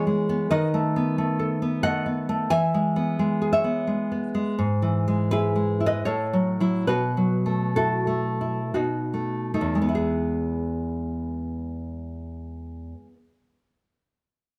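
A fingerpicked nylon-string guitar plays alone and up front in this tender romantic solo classical piece in E major and 3/4, its full-bodied tone ranging from E2 to G#5 at a rubato pace between 48 and 92 BPM, slowing from 3.5 to 9.9 seconds as the harmony settles from B7 back to E, then moving into a new section before the guitar stops at 13.3 seconds, all captured by close, detailed microphones with light reverb.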